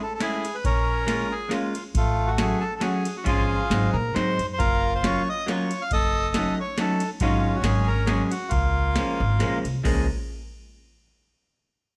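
Close, detailed microphones and a light reverb frame this charming, nostalgic musette waltz, a short cut from a longer piece swinging in 3/4 at 137 BPM in Db major. A reedy, dark bandoneon carries the melody up front. At 0.2 s a clean, picked electric hollow-body jazz guitar joins on accompaniment, along with a booming analog drum machine with a deep kick, tonal snare, crash and ride cymbals and a tape-warm character. A woody, growly pizzicato upright bass with steel strings enters at 0.6 s. The harmony drifts through Bbm7, Gbmaj7 and Gbm6 before settling on Db6 near the close.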